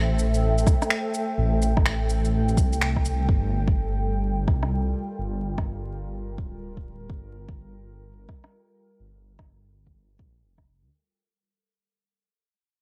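Vinyl crackle sits over this lo-fi, wistful future garage fragment, cut from a longer piece and fading out across its full 10.9 seconds, with a swung 16th-note feel. A warbling, nostalgic pad with chorus and its own reverb holds mellow sustained chords, moving from Am7 to Gm9 at 3.3 seconds, while a dark, detuned saw bass rumbles and beats up front, both with sidechain pumping. Tape-toned electronic shaker, rim clicks and finger snaps enter at 0.2 seconds, and a deep, layered electronic kick lands up front from 0.7 seconds, giving the rainy mood a steady pulse.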